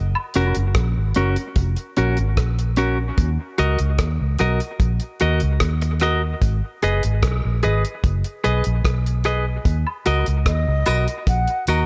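Dub reggae excerpt, heavy and hypnotic, built on a dark, round, foam-muted fingered electric bass up front, a dry, damped 70s drum kit of hi-hat, tight kick and rim click, and a bright, twangy clean electric guitar carrying dub echo, while a brief woodblock-and-tambourine touch at 0.2 seconds returns with echo at 9.9 seconds and an airy, distant jazz flute with vibrato enters at 10.5 seconds, all within a small room ambience.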